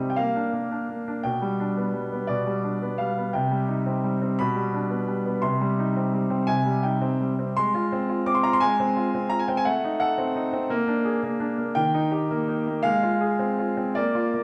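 A bright concert grand piano carries this short excerpt alone, its brilliant, open tone sitting up front with deep bass and long sustain across a span from B2 to D6. The piece is a classical-period sonatina in C minor, moving in 6/8 at 57 BPM counted in dotted quarters, shaped with rubato and carrying a playful yet elegant character. The harmony begins on Bb and passes through G/B and C minor before turning to Fm/Ab at 7.6 seconds, then Adim7, Bb7 and a landing on Eb near 11.8 seconds before returning to Fm/Ab. The piano is set in a reverberant recital hall with a 1.7-second decay, and the overall production leans dark and warm despite the instrument's sparkle. Tuned to A4 = 439 Hz, the passage runs 14.4 seconds as a single section cut from a longer work.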